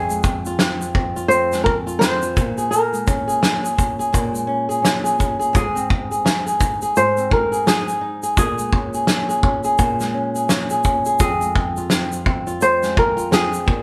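Acoustic pop at 85 BPM with a gentle sixteenth-note swing and a carefree, sunny mood, this excerpt pairs a warm, fingerpicked flamenco guitar melody with a dark, thumb-plucked flamenco guitar accompaniment over a loose indie drum kit of punchy kick, fat snare and shaker entering at 0.1 seconds, the band playing live in one roomy space with light reverb as chords move from Fm through Bbm7 and Ab back to Fm.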